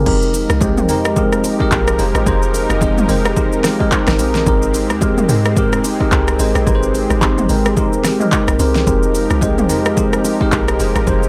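Hypnotic and soulful, this amapiano clip swings on a punchy, overdriven deep house drum kit with fat snare, handclaps, rim clicks and shaker up front, a deep, round log drum bass, a bell-like tine electric piano with phaser, a lush, detuned unison pad with chorus moving from Fm11 to Abmaj9 and back, and very quiet, close congas and bongos, all captured dry and gritty with transformer saturation.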